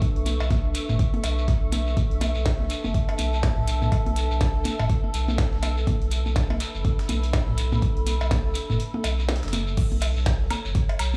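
Dry and gritty with a small-studio air, this short cut from a longer minimal techno track feels hypnotic and clinical, riding a swung 4/4 groove over a Bm7 chord. An up-front deep kick and a thick, saturated sub bass anchor the pulse, the bass pumping under sidechain, while a tiny-snared click kit with clicky hats and a tape-colored set of electronic toms, cowbell and woodblock with analog delay join at 0.3 seconds. A grainy, mellow acoustic shekere adds texture to the rhythm, and a compressed, sampler-style breakbeat kit with filtered hats and snare sits further back in the background. Above them, a swarming, detuned drone with granular grain and its own reverb hangs tense and evolving, pumping in time, alongside a warbling, nostalgic lo-fi pad with chorus. The kick drops out at 8.8 seconds, and at 9.8 seconds the pad stops as the piece falls into a drop that carries on to the end.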